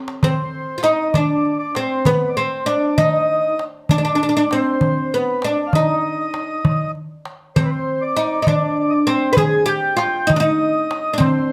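A darbuka opens with a fill at the very start and carries a straight 6/8 pulse at 66 beats per minute, counted in dotted quarters, its small clay-shell drum struck with hard hands for a high, natural-skin sound. This short cut from a longer Arabic maqam ensemble piece sits in C maqam nahawand with A tuned to 442 Hz, and the mood is warm and festive. Up front, a fretless oud plucked with a plectrum carries the melody between B3 and B4, its double strings giving a bright, woody tone. Alongside it, a mellow accordion plays a second line from B4 to Ab5, reedy and full with a tone-chamber richness, close-miked and dry, and set lower than the oud. All three parts play from the first moments through about 11.5 seconds in a single section, heard through close, detailed microphones in a small room with a short, wet reverb.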